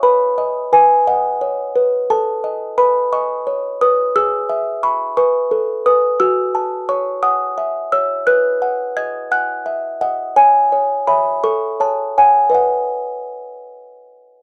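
Swaying in a gentle 6/8 at 58 beats per minute, counted in dotted quarters, this classical lullaby moves with an unhurried rubato that lets each phrase breathe. A solo music box carries the whole piece, its delicate, tinkling plucked tones ringing out from a large box across a range from F#4 to G#6. The sound is mellow and soft, sitting mid-forward and up front, while a light reverb gives it a touch of space within a dark, warm production. The harmony drifts from B through B7/A, E/G# and F#m7 before returning to B, then passes through C#m and F#m/A to settle on B again at 12.5 seconds. Innocent and tender in mood, this 14.4-second passage is cut from a longer piece.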